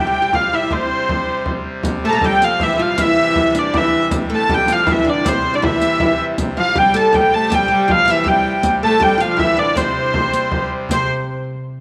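A nasal, reedy hurdy-gurdy leads this festive, ancient-sounding medieval dance in a straight 3/4, over a woody oud second line and a brassy trumpet-stop pipe organ drone in the background, with a deep, saturated frame drum entering at 0.3 seconds, a biting, gut-string viola da gamba joining at 2.0 seconds, and bright riq jingles sitting back in the mix, all within a wet echo-chamber reverb in this fragment of a longer piece.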